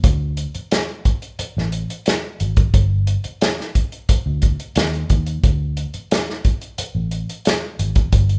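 The recording has the sound of a band playing live in one room, with a moderate large-studio reverb giving the short 8.4-second cut from a longer piece a lush, smooth glow. It is 1970s-style soul at 89 BPM in a straight 4/4. A vintage muted electric bass, played with the fingers and amplified, sits up front with a dark, round, punchy, foam-muted tone, moving between G1 and Eb2. Alongside it, an acoustic soul drum kit with a warm, rolled-off top pairs a tight kick with a medium-tuned snare and hi-hat. The kit sounds roomy yet close in the mix. Both parts play throughout.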